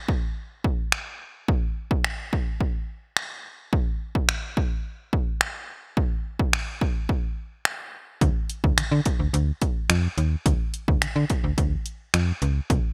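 Bittersweet and driving, this dance-pop excerpt opens on a punchy analog drum machine of kick, hi-hat and finger snaps bathed in gated reverb, joined at 8.2 seconds by a snappy, metallic FM bass with sidechain pumping, both up front in a bright, dry 1980s-style digital production.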